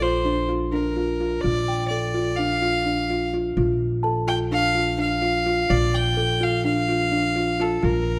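Set in a lopsided 9/8 with a straight feel, this brief excerpt of contemporary chamber music moves with a shimmering, playful lilt. A single bowed fiddle carries the melody up front, its tone biting and nasal with an earthy edge and a smooth top. Beneath it, a kalimba spins out soft arpeggios, each fingertip pluck ringing and airy from its hollow box. A pizzicato upright bass on steel strings anchors one low note close to the listener, while a sweet, bell-like small celesta adds delicate texture in the background until it stops at 5.4 seconds. The whole fragment rests on a single major-seventh chord, bathed in a moderate scoring stage reverb, and lasts 8.2 seconds as a warm slice cut from a longer piece.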